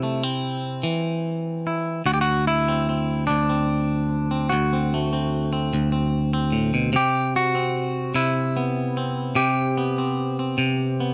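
Close, detailed and nearly dry, this brief pastoral folk passage in 6/8 at an unhurried 49 BPM features a lone clean electric guitar, bright, twangy and up front, picking through D mixolydian from a C chord to D7 at 2.1 seconds and settling on Cmaj7 at 6.9 seconds.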